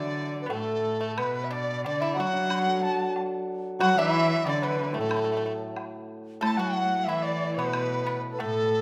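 Loose and rubato in two, this short fragment of Chinese traditional chamber music has a pastoral yet festive mood, with a mellow large dizi carrying the melody up front, its pure, buzzing bamboo tone shaped by vibrato and soft attacks. Beneath it, a close, biting cello with an airy, nasal bow plays a second line alongside a dark, woody erhu that glides with portamento in the background and a dry, percussive pipa played with fingerpicks. A shimmering, ringing hammered dulcimer supplies accompaniment until 8.4 s, and a woodblock sits in the background from 0.5 s, all set in a moderate recital hall reverb.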